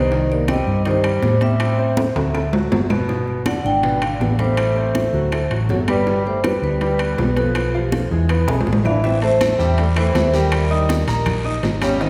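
Vibraphone, breathy trombone, clear grand piano and a dark, punchy hollow-body electric bass open this danceable, sophisticated Afro-Cuban jazz excerpt together, the ringing vibraphone carrying the melody over the trombone's mellow, whispered second line and the piano's long-sustaining chords, with the bass up front. Bright high-tuned congas, distant low-tuned bongos, woody claves and close metal-shell timbales fill in the percussion, with drum fills at 2.0 and 8.5 seconds. A raspy, saturated guiro joins at 9.0 seconds as the harmony shifts, all set in a lush, hall-like reverb.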